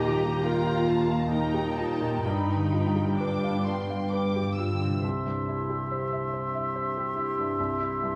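A felt-muted upright piano sits up front, soft and intimate, as muted violin sections carry a veiled, con sordino melody and a second line over dark viola and cello sections and a very quiet, ringing harp, in a slow, rubato 3/4 cinematic passage in G minor that moves from Ebadd9 to G7. The violas drop out at 4.1 s, and by 5.0 s the violins and cellos have also given way as an airy flute, a clear, punchy clarinet and an oboe with light vibrato take up second lines over a C chord, with the piano and fingerpicked harp continuing beneath. Heard in a moderate recital hall, this moving, longing fragment is cut from a longer piece.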